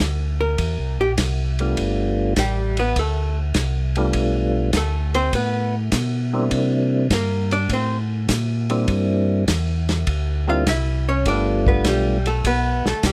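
A dry, close-sounding cut from a longer soul jazz organ trio piece, swinging at 101 BPM in G mixolydian with a soulful feel over C9 and G9 chords. A mellow, lightly overdriven tonewheel organ carries the bass line through chorus vibrato and a slow rotary speaker, while an acoustic drum kit with dark cymbals, a tight kick and a rolled-off top plays from the start. A clean, compressed hollow-body archtop guitar enters at 0.4 seconds in a jazz guitar solo, and a second, percussive organ with key click and a round tone takes the melody from 1.6 to 12.2 seconds.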